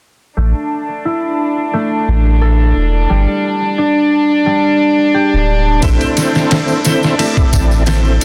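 A dense, heavily limited modern master with light reverb and a small room ambience opens this smoky, cinematic trip hop excerpt in A minor, moving at 88 BPM in 4/4 with a gentle swing on the sixteenths. From 0.4 seconds a rich, floating studio string section holds soft-attack bowed chords up front, roughened by vintage 12-bit sampler grit and shaped by a low-pass filter sweep. Beneath it, a concert harp rings out fingerpicked arpeggios through a low-pass filter and tape echo, while a deep, round sine sub bass sits prominently at the bottom. At 5.8 seconds, as the harmony settles on A minor, a fat, lightly overdriven tonewheel organ steps forward with percussive key click, chorus vibrato, slow rotary speaker, tremolo, sampler grit and tape echo. At the same moment a compressed, pitched-down sampler-style drum kit arrives up front with a thumpy kick, medium-tuned snare and ride cymbal, re-recorded in a large room. 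A close, dry tambourine joins alongside them in the background until everything ends at 8.2 seconds.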